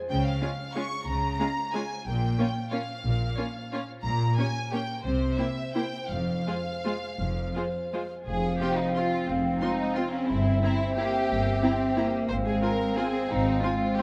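Bittersweet and dark, this orchestral ballroom waltz in 3/4 moves with a rubato feel, a fragment cut from a longer piece. A concert harp opens at 0.0 s, its fingerpicked arpeggios ringing in the background. The strings join almost at once: an intense, distant violin section carries the melody with vibrato, while a second violin section plays a smooth, even counterline. A focused viola section fills in the accompaniment, and a studio cello section and a lush double bass section share the bass. At 8.3 s the opening section returns, and two winds enter on second lines: an airy, hollow silver flute and a clarinet with a soft attack set in the background. The chords move from Db through Bb minor and a diminished chord to C7 and F minor, and a moderate concert hall reverb lends the ensemble a sense of space.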